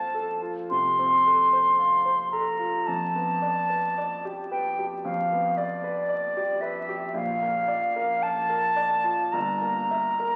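Rubato and unhurried in 4/4, this melancholic, solemn fragment of a romantic classical duo sets a pure, straight-toned concert flute up front with a crisp attack, singing the melody high over a clear, smooth, vintage grand piano accompaniment that reaches deep into the bass, both heard through the long wash of a scoring-stage reverb and the crackle of a very old 78 rpm record as the harmony passes from F through G7/F to Bb and an Edim/G at 9.3 seconds.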